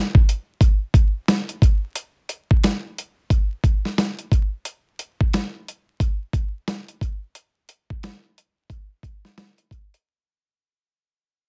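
Hip hop at 89 BPM in 4/4, this short excerpt has a soulful, warm mood and a relaxed swing on the sixteenth notes. A dusty, soul-flavoured sampler-style drum kit carries the whole groove, with hi-hat, kick drum and snare drum sitting up front. The kit is compressed and gritty, with a thumpy kick and a medium-tuned snare at a natural pitch. Light reverb and a bed of vinyl crackle surround the beat, and the master is dense and heavily limited in a modern way. The drums play from 0.1 to 10.0 seconds before a break takes over until 11.4 seconds, and the whole clip fades out throughout.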